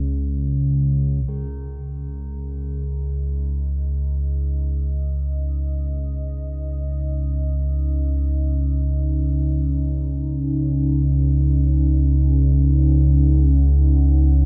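Ominous and vast, this dark ambient drone piece, cut from a longer work, unfolds in a huge, moderate reverb that lets every sound hang for seconds. A mellow analog drone sits up front from the very start, its sawtooth and pulse-wave tones slowly evolving through pulse-width modulation and chorus, with a slow attack and long release. At 1.3 seconds a quartz singing bowl appears in the background, struck with a wooden striker and gradually faded in; its ringing, pure tone carries a slow beating and a meditative calm, though it is close-miked and dry. From 2.8 seconds a deep, moody analog pad fades in with sustained, full-bodied chords built from detuned sawtooth and triangle waves with a sub octave and chorus. The production is dark and warm overall, leaving a brooding, enveloping atmosphere.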